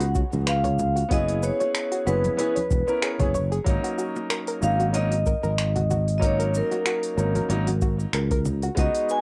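Sunset chillout at 94 BPM in a blissful, sunny mood, this short cut from a longer piece has a vibraphone with hard mallets singing a dark, ringing melody through tape echo and plate reverb, over a soft, round, nasal synth pluck spinning chorused arpeggios and a growly, punchy fretless bass sitting up front. A dry, overdriven electronic kick and a deep house kit with smooth hats, cabasa and finger snaps carry a gently swung groove, with very quiet congas and bongos adding bright hand percussion. From 1.1 seconds a clear, intimate grand piano with audible action noise joins on suspended chords, and the whole thing has the light reverb and soft grain of a home cassette recording.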